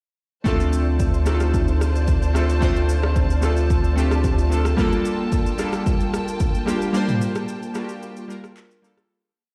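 Heard through a big sound system in a bare stone room, this short, hypnotic and soulful amapiano piece in G minor moves at 111 BPM, an overdriven deep house kit laying down a steady shaker, deep kick, syncopated rim clicks, handclaps and toms. A round sine sub bass holds sustained notes until 4.7 s, while detuned, wave-folded analog keys with chorus play bright, rootless rhythmic chords with grace notes over a lush bowed string pad with vibrato. The chords move from Dm7 to Gm9, and a break from 6.9 s fades the groove out.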